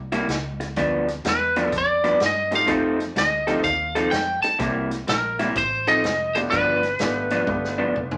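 A dark, round electric bass with a foam-muted, punchy tone opens this rollicking, soulful electric blues shuffle excerpt, and almost at once a riff guitar through a small old amp and a swinging big-band drum kit join it at 125 BPM in a swung 4/4. The riff guitar sits up front, slightly broken-up and lo-fi, while the drums sound distant and roomy, with a boomy kick, a medium-tuned snare and a rolled-off top. At 1.3 seconds a lightly driven lead guitar takes the melody, its dark, picked, compressed tone the loudest part of the mix. A bright upright piano enters at 2.5 seconds with brilliant, woody, intimate accompaniment, its action noise audible. The changes move through C7, G7 and F7, and a drum fill arrives at 7.5 seconds before the cut, the whole band framed by a moderate club reverb.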